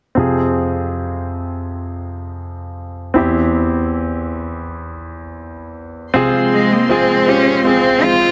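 A melancholic pop ballad in a straight, unhurried 4/4, this short excerpt opens with a bright concert grand piano alone, its brilliant tone, deep bass and short sustain sitting up front as it moves from F minor to C over E. At 6.1 seconds the harmony returns to F minor and the arrangement fills out: a studio string section, bowed sul tasto with a soft attack and smooth top, holds sustained chords in the background, while a clean, direct-recorded electric guitar picks compressed arpeggios at a very quiet level. At 6.5 seconds a single cello takes the melody, its focused, vibrato-laden bowing placed up front and sounding clear above the accompaniment. A lush hall reverb of moderate depth surrounds the ensemble, lending the emotional passage a spacious finish before it breaks off at 8.3 seconds.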